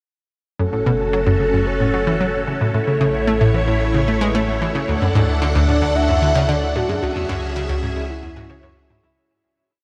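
Ambient, sequencer-driven space music in F# minor at 112 BPM, this complete piece feels expansive and hypnotic, moving through F#m, A, D and C#m before a fade-out that begins at 6.3 seconds. Up front, an analog pluck repeats a bright, detuned 16-step sequence in the low register, its fast attack and short decay thickened by chorus and tape echo. A lush string machine ensemble holds sustained chords with a vintage sawtooth sheen, soft attack and sub octave, colored by phaser and ensemble chorus. Over this, a soft octave-layered synth lead sings a free, dark melody between E4 and E5, carrying vibrato along with chorus, tremolo and tape echo, while a round, deep analog bass sustains the roots beneath. A very quiet concert harp rings with mellow fingerpicked arpeggios in a 10-step loop that drifts against the bar, lingering until 9.8 seconds. The whole mix sits in a huge ambient reverb with a cassette-tape character.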